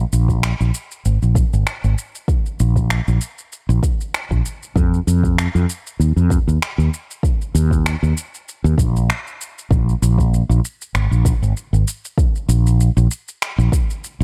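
A mellow fretless electric bass anchors this excerpt of earthy, meditative organic downtempo, its dark, round and punchy tone sitting up front and direct, with a sidechain pumping effect. It moves between Ab1 and F2 at 97 BPM in 4/4, with a 55% swing on the sixteenths. An electronic kick drum arrives at 0.3 seconds, deep and tape-warm, re-recorded in a large room and placed up front with studio reverb. Beneath them, a layered electronic shaker and finger snaps sit quieter in the mix, overdriven and washed in studio reverb. A short break at 9.1 seconds gives way to a new section, and the whole is set in a digital ambience.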